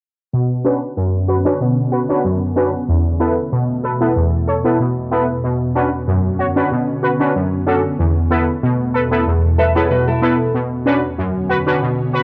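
Dancehall in B minor at 94 BPM, tough and bouncy, where punchy, brassy synth stabs up front carry the accompaniment from 0.3 s with chorus and plate reverb, an ethereal, mellow pad with tremolo holds sustained chords beneath from 0.9 s, and a full-bodied, fingerpicked nylon-string guitar slips in with brief arpeggios at 9.6 s, all over Bmadd9 and Esus4 with a filter sweep running through the whole excerpt, in moderate booth ambience with a cassette-tape home-recording tint, cut from a longer piece.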